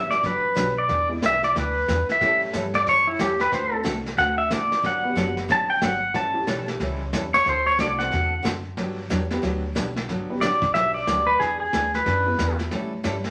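Western swing country with a playful, swinging lilt, this short excerpt is led by a clean pedal steel guitar played with fingerpicks, sitting up front with gliding slide lines and volume swells as it takes a solo through the first 10.1 seconds. The steel drops out briefly near 8.4 seconds before returning for the closing passage as the chords move through a Gmaj7, E7, A7, D7 cycle. Underneath, a woody, thumpy pizzicato upright bass and a vintage brush kit keep the swing going, the drums sounding muffled, gritty and lo-fi in a small room, with a punchy kick and a rolled-off top. A bright, full-bodied picked dreadnought acoustic guitar fills the middle, while a detuned, jangly honky-tonk upright piano sits boxy in the background. A wet studio reverb and a layer of vinyl crackle give the whole recording an old-record patina.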